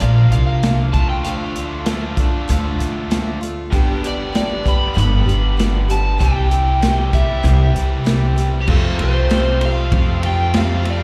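Folk rock and heartland rock with a hopeful, open-road mood, cut from a longer piece and heard as a live gig through the venue's PA with a recital-hall air. A dark, overdriven slide guitar played with fingerpicks carries the melody over a bright, boxy parlour acoustic with audible finger squeak and a biting, double-tracked electric riff, each of the three guitars touched by slapback echo. A woody, thumpy upright bass sits up front beside a natural country kit with a punchy kick and medium-tuned snare, and the harmony settles onto Fadd9 at 8.7 seconds.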